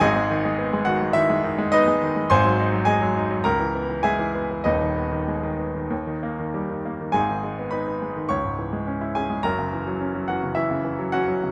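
Heard through close, detailed microphones in a large studio with a moderate reverb, a clear, polished baby grand piano plays alone, up front and short in sustain, in this passionate, stormy cut from a longer virtuoso classical piano study in G# minor, moving in a rubato 4/4 at roughly 95-108 BPM across a range from D#1 to C#6, with harmony that passes from G#m through C#m7 to a D# chord before a new section begins at 7.1 s and heads toward F#7.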